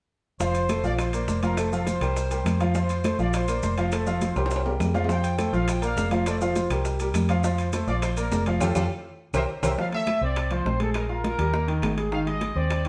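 The rhythm moves briskly at 205 BPM in a straight 4/4, a joyful, festive salsa passage in F major cut from a longer piece. High-tuned, bright congas sit in the background alongside round, low-tuned bongos, ringing metal-shell timbales, very quiet woody claves and grainy, band-limited maracas that drop out at 9.7 s. A dark, foam-muted electric bass sits up front with a punchy, amped tone, while a clear grand piano supplies the accompaniment and a trumpet section carries the melody with light vibrato in a pop style. Drum fills arrive twice, and the band hits an accent together from 8.6 s until a new section opens at 9.8 s, where the harmony moves through F6, Bb5, Eb5 and Ab. The band plays live in one room, and a moderate stone-room reverb lends the ensemble a lively sense of space.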